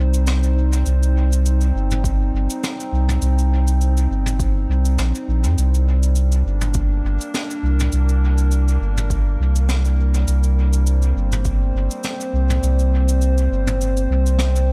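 Spacious and deep, this excerpt of ambient dub with a gentle swing sets a warbling, nostalgic lo-fi pad, dark and coated in chorus, built-in reverb and 12-bit sampler grit, over a round, soft sub bass that sits up front and sustains beneath it. A vintage brush kit of cabasa, snare and toms, natural and rolled-off in a small room, is bathed in dub echo. An overdriven electronic kick joins in the background at 2.0 seconds and stops at 11.6 seconds, all within a dry, echo-heavy mix.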